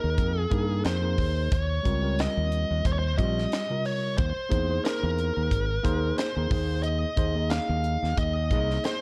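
A distorted, bluesy lead guitar carries the melody from the start over a worn, slightly out-of-tune electric piano heard through its built-in speakers with light overdrive, and a direct, punchy fingered bass, with a crisp fusion drum kit of hi-hat, kick and snare joining at 0.2 seconds. This bright, funky stretch of electric jazz fusion swings its sixteenths lightly through extended chords such as Bb9sus4, Eb13 and C7alt/D#, arriving on Fm7/Eb. A high-tuned snare and airy, polished drum sound sit in a dark, warm production with light reverb and small-room ambience, with the guitar and bass placed up front.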